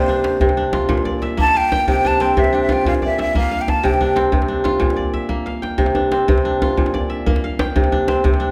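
A reverberant recital-hall sound surrounds this short, hypnotic and joyful slice of West African string and xylophone music, taken from a longer piece in C mixolydian at 122 BPM in a straight 12/8. Up front, a bright, crisp kora fingerpicks ringing arpeggios from Bb2 to G5 across the whole passage as the harmony sways between C and Bb. A breathy, mellow silver concert flute carries the melody between C5 and A5, tongued with vibrato and a slightly unsteady quality, before it stops at 4.2 seconds. A medium-tuned djembe, close and dry under soft hands, keeps the percussion going throughout and adds a short fill at 5.0 seconds. The hall's wet tail gives the acoustic instruments a spacious, churchlike glow.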